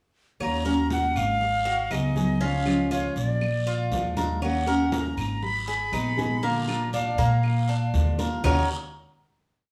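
From 0.4 s, a short, sultry Cuban son and guajira piece in Eb minor at 119 BPM opens with the full band together: a breathy, bright flute with vibrato and a crisp chiff states motif-based call phrases, while a full-bodied nylon-string guitar strums with muted slaps and a metallic, double-strung tres picks an arpeggiated guajeo. Up front, a woody pizzicato upright bass plays a tumbao that anticipates the chords, and in the background ringing, high-tuned congas with slaps and open strokes join a vintage-sounding clave time line and a raspy, close guiro. The band sounds live in a small room with a wet studio reverb, and the piece closes on a final Ebm7 chord at 8.4 s.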